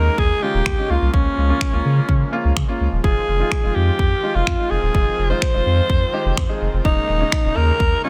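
This dance-pop excerpt has a driving, confident feel in a straight four-four pulse, cut from a longer piece. A raspy, gritty alto saxophone carries the melody up front, with vibrato and a smooth top to its pop-style solo line. Beneath it, a clear, present grand piano plays the accompaniment while a soft, detuned supersaw holds sustained chords in the background, both pumping against the beat along with a deep, round sine sub bass with a fast attack. The house drum kit enters at 0.2 seconds with a punchy kick and finger snaps sitting up front in a layered, electronic, produced sound. The harmony moves from Eb7sus4 to Db6 and Fm7 before returning to Eb7sus4, all in a dry, dense and heavily limited modern mix.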